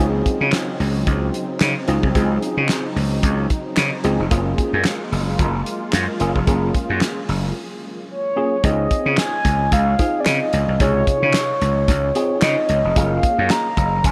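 A dreamy mix soaked in a huge ambient reverb frames this smooth, danceable slice of early-eighties boogie funk at 111 BPM in Db major, where a growly, overdriven slap bass and a damped 70s kit with a fat snare, tight kick, hi-hat and handclaps sit up front, while a worn, slightly out-of-tune tine electric piano with ensemble chorus comps over Dbmaj9 and Gbmaj9 chords. A soft sawtooth analog pad, detuned and chorused, hums in the background until 8.6 seconds, just after a short break that begins at 7.6 seconds. From 8.1 seconds a round, horn-like synth lead with vibrato, chorus and delay carries the melody in a high register.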